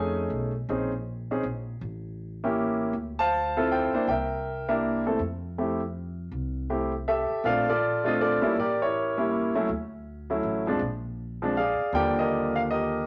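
A clear, up-front concert grand piano and a woody pizzicato upright bass sit in a wet studio reverb on this relaxed, playful jazz piano trio excerpt, swinging in 3/4 at 160 BPM. The piano carries the melody from D3 to A5 with natural tone and deep bass, while the quieter bass holds the low end over altered dominants and lush ninth chords in F major. At 7.4 seconds the harmony moves to Bb major, passing through Dmaj9 and Ebmaj7 before both parts stop near 13 seconds.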